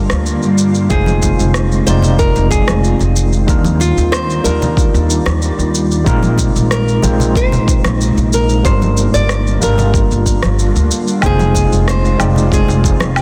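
This wistful, relaxed sunset chillout excerpt opens with a fingerpicked nylon-string guitar melody touched by tape echo, set over a barky, overdriven tine electric piano with fast tremolo and delay, an ethereal shimmering pad with chorus and 12-bit sampler grit in the background, and a woody pizzicato upright bass up front. Electronic rim click, shaker and woodblock arrive almost at once, with soft clipping on the snare, followed by a deep electronic kick at 0.9 seconds and bright, close congas at 1.1 seconds. The harmony drifts through Gm7, Fm7, Ebmaj9 and Bb9sus4 in a light reverb, with a dense, heavily limited modern master.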